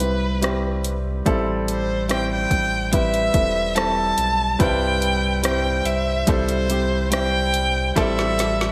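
Bright 1980s-style digital production bathed in a lush hall reverb frames this tender, emotional pop ballad fragment in C major at 72 BPM, moving between Cmaj7 and Am7. A rich, expressive solo violin sings the melody with vibrato and portamento over a polished, up-front grand piano accompaniment and a deep, full sub bass with an octave layer. A punchy electronic deep house kit with a woody snare, dark hats and gated reverb carries the straight 4/4 pulse and ends on a drum fill from 8.0 seconds.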